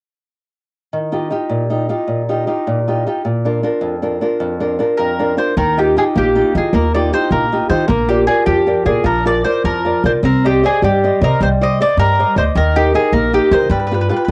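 A home cassette recording with light reverb and a close, up-front sound captures this lively, sunny Italian folk excerpt in 6/8 and Eb major, moving at 103 BPM in dotted quarters with a straight feel. A small, dark-toned fingerpicked nylon-string guitar opens at 0.9 seconds with taped accompaniment over Ebadd9 and Bb. A round, mellow picked mandolin on doubled strings takes the melody from 5.0 seconds, and a woody, thumpy pizzicato upright bass on gut strings joins at 5.6 seconds as the harmony passes through Cmadd9 and Eb to a closing G7.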